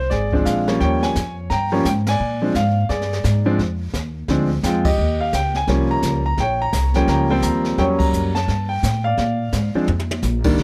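This is a short excerpt of swinging, relaxed jazz piano trio music at 172 BPM in 4/4, with a lilting swing on the eighth notes. A clear concert grand piano carries the melody from the opening moment, ranging from Eb3 up to Bb5 with a natural tone and deep bass, set up front alongside a woody, pizzicato upright bass with steel strings that holds down the low end between Ab1 and Bb2. A jazz brush drum kit joins at 0.1 seconds, its brushed snare, hi-hat, ride, crash, toms and boomy kick captured with a small-room, natural sound, dark cymbals and a high-tuned snare, sitting lower in the balance. The harmony moves through Bb9 and Eb9 chords before an Edim7 and a closing Bb7, with the whole band hitting accents at 2.0, 4.8 and 8.0 seconds. A brief drum fill from 9.9 to 10.2 seconds leads toward the cut, all wrapped in light reverb.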